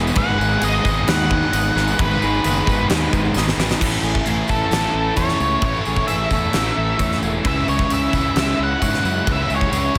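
A hazy, dreamy shoegaze and dream-pop rock excerpt at 132 BPM opens with a compressed twelve-string electric guitar shimmering through subtle chorus and digital delay over three overdriven guitar riffs, one biting with reverse reverb and two hollow-bodied semi-hollows, one analog-chorused and the other double-tracked, atop a bright, fuzzed fingered bass, while a background tambourine jingles, a gated 80s kit with a fat snare and punchy kick sits up front, a dark octave-fuzz lead guitar sings a distorted, delayed melody from 0.2 seconds, and a drum fill at 3.3 seconds carries the G#m7 opening into Amaj7 and C#m7 in a concert-hall reverb.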